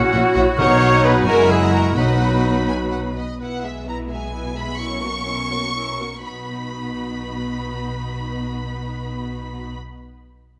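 A quick, cheerful classical-period movement for symphony orchestra in B major, in 6/8 at 76-90 BPM with a rubato feel that slows between 2.7 and 6.2 seconds. The rich, vibrato-laden violin section carries the melody over a lush second violin line, distant violas, smooth cellos and even double basses. In the opening seconds a bright, airy flute, oboe, clarinet and mellow bassoon sit in the background alongside a tight French horn section and very quiet, round timpani struck with soft mallets, all bathed in a moderate concert hall reverb, before the strings continue alone until 9.7 seconds.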